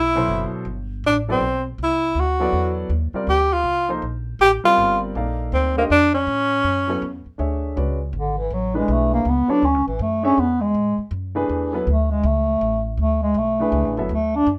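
Hypnotic and open, this jazz excerpt from a longer piece sways in a swung 3/4 feel. A breathy tenor saxophone carries the melody up front from the start, its soft attack, scooped notes and vibrato giving a whispered, intimate quality before it stops at 7.2 s. A woody pizzicato upright bass on steel strings anchors the low end throughout, while a warm, natural-sounding grand piano supplies accompaniment beneath both horns. In the second half the harmony moves into D lydian, and a warm bass clarinet enters at 8.2 s as the solo voice, up front with a gentle attack and vibrato. Moderate studio ambience surrounds the group as the harmony drifts from Cmaj9 through Ebmaj9 and A6 before settling on Dmaj9.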